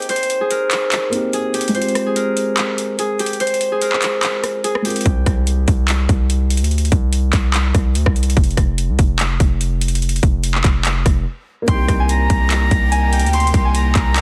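A dense, heavily limited modern mix in a studio reverb opens this brooding, melancholic trap excerpt in C minor, moving at 145 BPM with a half-time feel. An up-front, bright Celtic harp carries the fingerpicked, ringing melody through a low-pass filter, while a dark concert grand piano, boxy and intimate with audible action noise, supplies filtered accompaniment until 5.1 seconds. The trap drum kit runs throughout, its hard-clipped kick, metallic hi-hats, handclaps and rim clicks pushed forward with overdrive and vintage 12-bit sampler grit. At 5.1 seconds a punchy, saturated 808-style bass arrives with a fast attack and a noise layer beneath its sine tone, and the chords shift from Cm7 and Fmadd9 to bare fifths. The piano returns at 11.6 seconds and the harp at 11.7 seconds, joined by a breathy, straight-toned flute line with tape echo and a rich symphonic string section holding biting, lightly vibrato chords in the background.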